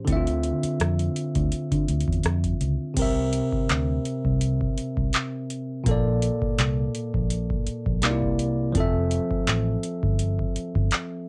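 A bell-like tine electric piano, bright and up front with a cassette-tape colour, carries this tender, romantic contemporary R&B excerpt over a dark, round, foam-muted fingered electric bass and a booming analog drum machine with a deep kick, metallic hats, handclaps, rim clicks and a crash, lightly swung and dry in a home cassette recording as the chords move from Dm9 through C7 and Bbmaj7 to Fmaj7.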